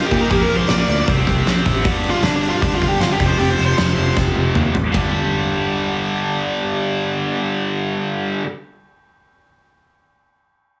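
A dark, bluesy overdriven lead guitar, colored by distortion and analog delay, opens this menacing, aggressive hard rock excerpt with a solo that ends at 4.2 seconds, giving way to a drum fill. Beneath it, a bright, tight distorted guitar, double-tracked and up front, drives the riff through to 8.5 seconds, while a growly, foam-muted picked electric bass holds down the low end. The huge arena drum kit brings a fat snare and punchy kick in a hall-like space, all within a small room ambience and a heavily compressed, radio-like sound.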